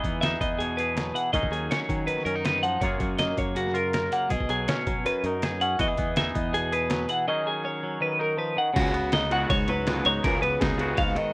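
Math rock and midwest emo at 162 BPM in a straight 4/4, this short, bright and intricate cut opens with a bright twelve-string electric guitar spinning arpeggios over a clean, twangy electric guitar whose accompaniment carries a warbly pitch drift, while a growly fingered bass and a muffled, pitched-down sampler-style drum kit with a thumpy kick sit beneath them. The chords cycle through Emaj7, B69/D#, F#maj9 and B69 until 8.8 seconds, when the harmony shifts to C#9sus4 and a raw, overdriven, double-tracked garage guitar joins with a riff. The mix is dry and rough, like a home demo, with the drums, the twelve-string and the twangy guitar pushed up front.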